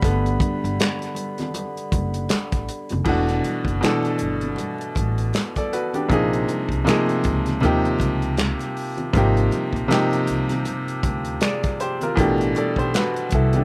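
The sound is dry, with little reverb, and this short cut from a longer neo-soul and R&B piece feels smooth and sensual, with a gentle 16th-note swing. A bright, woody upright piano sits up front with a slapback echo, taking a solo over the opening 3.1 seconds while a mellow, close-miked brass section holds sustained chords with light vibrato until 3.0 seconds. A growly pizzicato upright bass with steel strings and a woody body anchors the low end throughout. The soul drum kit sounds roomy yet distant, with a tight kick, a medium-tuned snare, dark cymbals, hi-hat, crash and finger snaps under a rolled-off top. Very quiet congas add a ringing, vintage, band-limited color. The harmony drifts through lush extended chords, moving from Gmaj7 to Em9, Bbm9, Eb13 and Abmaj9 before settling on Am7.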